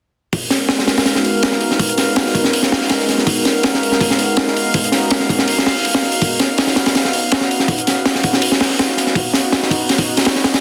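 A crunchy, punchy breakbeat kit with a high-tuned snare sits up front in this atmospheric yet frenetic drum and bass cut, entering at 0.3 seconds just ahead of a warbling, nostalgic pad of sustained chords moving from G#m9 to B at 6.2 seconds, while a glassy, drifting overtone texture hovers in the background, all bathed in a lush hall reverb with a dense, heavily limited finish.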